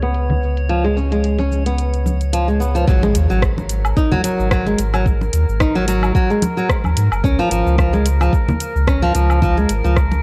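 A fingerpicked flamenco guitar with a dark, digitally delayed tone plays arpeggios up front over a round sine sub bass with sidechain pumping, a metallic-hatted afro-pop kit with rim click, shaker and woodblock, and a glassy, drifting-overtone texture softened by chorus and reverb, all in a meditative organic downtempo groove at 110 BPM in G# dorian. Bright, close congas with hard hands join at 0.3 seconds, and at 2.9 seconds a deep electronic kick arrives alongside a very quiet impact as the harmony shifts from C#7 to G#5. The dark, lightly reverberant production carries this excerpt from a longer piece through to a C# chord at 7.2 seconds.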